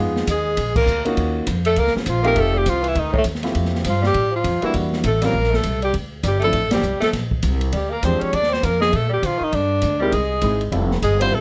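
Sophisticated and playful, this small-group swing and bop jazz clip moves at a brisk 201 BPM in 4/4 with a lilting swing feel, and it is cut from a longer piece. A clear alto saxophone carries the melody up front, with vibrato and scooped notes, while a raspy, growling tenor saxophone with light vibrato and a vintage, gritty edge plays a second line beneath it. A warm, natural grand piano supplies chords, and a woody, thumpy pizzicato upright bass sits prominently in the mix. The open drum kit sounds dark and smooth in a small room, with a boomy kick, medium-tuned snare, hi-hat, ride and crash cymbals. The band hits accents together at 0.7 and 6.7 seconds, and the harmony settles into F major from 3.6 seconds, all wrapped in a moderate club reverb.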